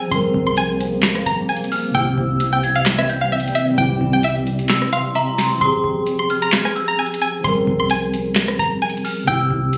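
A half-time trap groove in 4/4 rides on a booming, overdriven analog drum machine with a deep kick, crisp snare, handclaps, rim clicks and metallic hats, the kick dropping out from 4.7 to 5.6 seconds, while a clean, boomy 808-style bass sits in the background. Up front, a twangy, string-like resonator pluck carries the melody through chorus and tape echo over a mellow tine electric piano, and a blurred granular cloud pad holds chords until 5.6 seconds. From 1.7 seconds a detuned, warbling synth bell adds an inharmonic second line with phaser, giving this dark hip hop excerpt an eerie mood.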